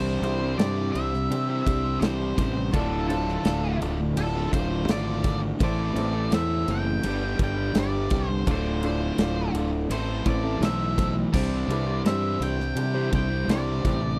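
Dry and close, this 1970s-style studio recording has little reverb, giving a swaggering, brooding classic rock excerpt in a straight 4/4 at 84 BPM. Up front, a growly fingered electric bass with fuzz and overdrive anchors the low end, while a big acoustic rock kit comes in at 0.2 s with a punchy kick, a medium-tuned snare, bright crash and ride cymbals, and a big-room sound. Two double-tracked overdriven electric guitars sit in the background playing riffs, one dark and the other crunchy and warm. Above them, a picked octave-fuzz lead guitar carries the melody with a shadowy, distorted edge. Very quietly underneath, a clear, woody upright piano with a slight detune and short sustain and a full-bodied jumbo steel-string acoustic guitar add accompaniment. The harmony moves through Cadd9, Dm, Am and G, then Dm and Am again, before returning to Cadd9 at 11.3 s, all within a 14.2-second cut from a longer piece.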